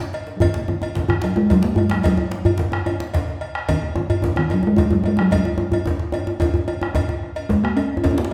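A short drum fill opens this driving, earthy West African drum ensemble excerpt in 12/8 at 147 BPM, with a round, vintage-toned bombo sitting in the background beside a deep djembe carrying metal rattles and a metallic cowbell. From 0.4 seconds a resonant talking drum takes the melody up front, moving between C#3 and C#4 in F# major pentatonic, joined by a second, medium-tuned djembe sitting forward in a live room. The whole ensemble rings in the lively reverb of a church or concert hall, giving the cut from a longer performance a spacious, live-room character.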